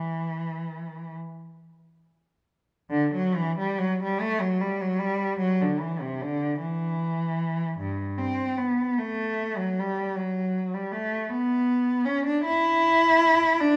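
A single bowed cello opens this fragment of a classical piece for unaccompanied cello, its rich, smooth tone sitting up front with vibrato and ranging from G2 to E4. The music moves freely in a slow, rubato 6/8, somewhere between 28 and 54 BPM counted in dotted quarters, with a new passage beginning at 2.9 seconds and continuing to 13.8 seconds. A moderate recital hall reverb surrounds the even, nostalgic playing, lending it a serene mood.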